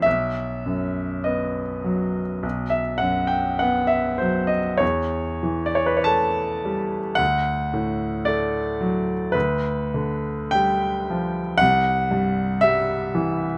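Classical romantic nocturne for solo piano in a wistful, melancholic mood, unfolding slowly at 45-59 BPM in a free rubato 4/4, with a clear, natural grand piano sitting up front across a range from B1 to A5, captured by close, detailed microphones with light reverb as the harmony moves from B through A5/E, D and G7/D to C in this 13.6-second excerpt cut from a longer piece.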